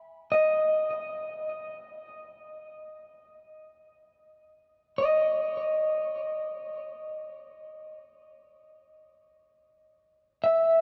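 Ambient music in free time, this short piece from a longer work has a luminous, warm mood. A lone electric guitar plays from 0.3 s to the end at 10.8 s, held within a narrow span from D#5 to E5. Its picked tone sits just at the edge of break-up, slightly gritty yet warm, compressed and placed up front, with delay trailing each note. A huge, wet reverb with a 6.9-second decay sets the guitar in a vast, echoing space. The sound carries the patina of cassette tape, and the tuning rests a hair below standard pitch at A4 = 439 Hz.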